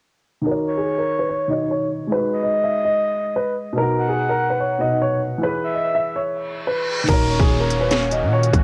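A half-time 4/4 drill groove at 145 BPM in Eb phrygian sets a tense, cold hip hop mood in this clip, opening with a boxy, low-passed baby grand piano comping chords under a dark, mellow grand piano melody with long sustain and a cassette tint, while a breathy, flute-like synth lead with vibrato and chorus adds a soft, warbling second line over a filter sweep. A reverse cymbal and downlifter enter at 6.5 s, and at 7.1 s the section shifts as a hard-hitting drill kit with a clipped kick, sharp snare and crisp hats lands up front with a growling, buzzy 808-style bass and an airy, detuned sawtooth pad that sweeps in. The light reverb and home cassette sound lend the whole passage a hazy, lo-fi cast.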